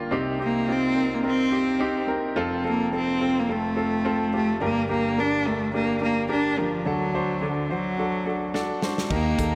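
Bittersweet and driving, this piano-driven pop excerpt moves at 107 BPM in 4/4 with a light sixteenth-note swing, as an intimate grand piano with audible action noise and long sustain carries the Cm, F, Gm and D chords while a biting, boxy solo cello with vibrato sings the bowed melody up front from 0.4 seconds. A tight acoustic drum kit enters with a fill at 8.5 seconds, and at 9.1 seconds a dark, round, foam-muted picked bass joins a very quiet, veiled string section playing con sordino. A concert-hall reverb gives the whole an arena-sized sound.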